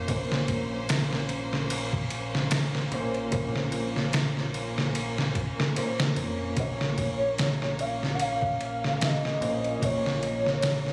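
Trip hop with a hypnotic, cinematic mood, this short excerpt is cut from a longer piece and sits on a single Bbmadd9 chord in a swung 4/4 groove. A felt-muted upright piano carries the accompaniment from 0.0 seconds, its soft, intimate tone roughened by tremolo, vintage 12-bit sampler grit and tape echo, while a bright studio violin section holds sustained chords with a biting edge and light vibrato. Underneath, a deep dub fingered electric bass stays low, round and punchy, and a sampler-style drum kit enters at 0.1 seconds, pitched down and gritty, with a thumpy kick, medium-tuned snare and ride cymbal placed up front. At 6.6 seconds a pure, breathy sine lead takes the melody in a higher register, its soft attack and sustained notes colored by subtle chorus, vibrato and tape echo. The sound carries the character of a phone recording in a room, with light reverb, digital ambience and compression.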